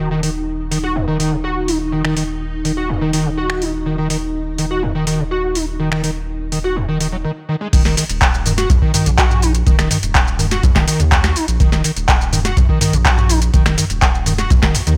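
Trippy and hypnotic, this acid house excerpt in straight 4/4 opens on a lush, vintage string machine holding sustained chords with a slow attack, its chorused ensemble tone breathing with sidechain pumping until it stops at 7.2 seconds. Up front, an overdriven acid bass churns through a squelchy, resonant square-wave riff with filter sweeps, its gritty distortion smeared by chorus, cassette tape character and dub echo. Beneath it, a saturated sine sub bass sits deep and thick, sustained and pumping under the sidechain. A booming analog drum machine, tape-warm and prominent, supplies a tonal snare, metallic hats, handclaps, finger snaps, shaker, toms and crash cymbal, with a short room around the snare, clap and hats. At the drop at 7.7 seconds, a deep electronic kick joins and drives the groove onward, all set in a digital ambience.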